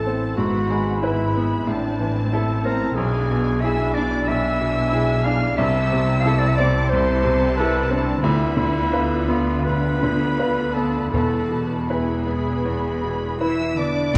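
In a rubato 4/4, this passionate, tragic classical passage, cut from a longer piece, unfolds around a brilliant, up-front grand piano carrying the melody, joined by a muted studio violin section playing the tune high above it with light vibrato. A lush symphonic violin section and a clarinet in classical solo style weave second lines. Con sordino violas fill in the accompaniment, while veiled cellos and double basses hold the bass with soft attacks, all of these strings bowed and muted. A round, soft-mallet timpani enters in the background at 11.1 seconds as the harmony settles on E, and at 13.4 seconds a pure, expressive flute section and a mellow, tight French horn section holding sustained chords arrive, with a barely audible tuba touching the bass at the very end. The production is dark and warm, set in a wet scoring-stage reverb.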